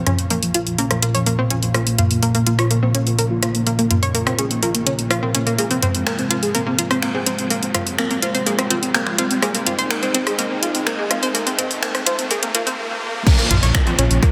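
A driving straight 4/4 pulse at 125 BPM carries this dark, dramatic melodic techno excerpt in Bb minor, where a moody detuned analog pad with chorus and a thick unison lead with tape echo build under filter sweeps alongside a round, chorused analog pluck arpeggio with delay, all three pumping to the sidechain, while a tape-toned house kit of hi-hat, rim clicks, finger snaps, toms and crash drives the build-up and faint risers and downlifters enter at 2.2 s, until a stop gives way at 13.3 s to a punchy electronic kick, joined at 13.5 s by a rumbling detuned saw bass, in a huge reverberant space.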